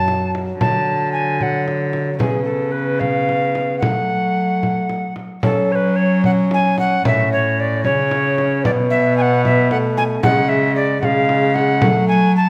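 A renaissance-style consort dance in F# minor, this solemn, courtly excerpt moves at 75 BPM in 6/8, led by an airy, woody alto recorder played up front with tongued chiff, vibrato and lifted highs. A dark bassoon with its own vibrato supplies the accompaniment, while a single bowed cello, close and up front with a rich, reedy gut-string tone, carries the bass, and a small, bright frame drum played with hard hands adds percussion. The consort sits in a moderate recital hall reverb, and the passage is cut from a longer piece.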